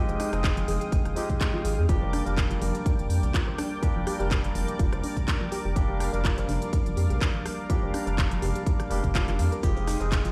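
Smooth and deep, this deep house excerpt at 124 BPM with a light 16th-note swing moves from Fm9 to Gm/F over a punchy layered electronic kick, handclaps, crisp hi-hats and rim clicks, distant background congas, and a round, dark analog bass, while a sidechain-pumped detuned sawtooth pad with chorus and 12-bit sampler grit, barky overdriven tine electric piano stabs with delay, and soft pluck arpeggios with chorus and dub echo pulse together, a grainy shekere slips in at 9.6 s, and the whole mix sounds as if played on a big sound system in a bare stone room.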